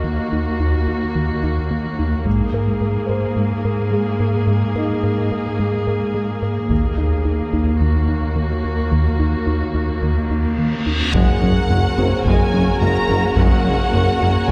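Brooding and relentless, this excerpt of a cinematic hybrid orchestral and electronic film score builds over a chamber viola section, a soft plucked arpeggio with chorus and tape echo, a deep round analog bass riff, a rich cello section and a felt-muted upright piano in the background, punctuated by hard-stick taiko hits at 2.3 s and 6.7 s, until a reverse cymbal and sub drop at 10.4 s lead into an impact at 11.1 s, where lush violins carry the melody and a second line over mellow French horns, a double bass section and a distant tuba, all set back in a wet scoring-stage reverb.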